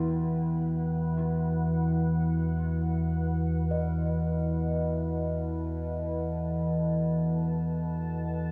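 Unfolding in free time, this cavernous, desolate dark ambient drone in E harmonic minor rests on a single E minor chord, with an ominous, rumbling low drone sitting up front while a deep, moody sawtooth pad holds sustained chords treated with chorus. In the background, an eerie, inharmonic synth bell traces arpeggios through a diffuse ambient delay, and at 3.7 seconds a pure quartz singing bowl enters with a ringing, slowly beating tone. The dreamy mix is soaked in a lush hall reverb, and the passage is cut from a longer piece.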